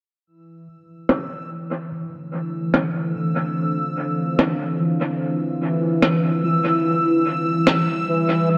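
A moderate echo-chamber reverb gives this spacious, deep ambient dub fragment its sense of depth, with a bubbling, resonant sawtooth texture out front from 0.3 s, its filter stepping at random. A close, acoustic rim click played with brushes arrives at 1.1 s, trailed by dub echo and a filter sweep. A dark, moody pad of detuned sawtooth and sine with a sub octave fades in beneath, holding slow-attack chords that move from Dm9 to Em7 at 6.8 s.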